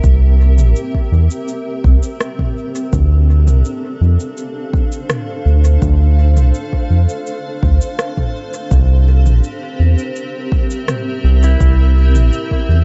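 Ambient dub with a spacious, meditative mood, cut from a longer piece, where a round, deep analog bass with tube saturation sits up front under a cloudy, blurred granular pad that holds sustained chords over C7 and Dm7. A layered electronic kick with a tape-warm, small-room character anchors the groove, while an overdriven electronic kit adds cabasa, rim clicks and toms soaked in dub echo. At 11.4 s a clean electric pedal steel guitar, played with fingerpicks and slide, slips in with brief arpeggios through tape echo, all set in a dark, digital ambience.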